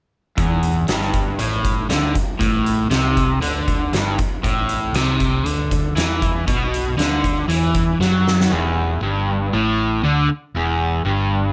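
An overdriven, double-tracked semi-hollow guitar sits up front with a picked, low-register riff, giving this swaggering, gritty blues rock and southern rock excerpt its bite as it moves from Emadd11 through A5 and B5 before landing on E5. Beneath it, a dark, round hollow-body bass holds down the low end, while an oversized, low-tuned acoustic kit with a boomy kick, fat snare and hi-hat pumps in a big room, saturated and close. The drums hit a fill and drop out at 8.5 seconds, leaving guitar and bass to carry the final section under light reverb.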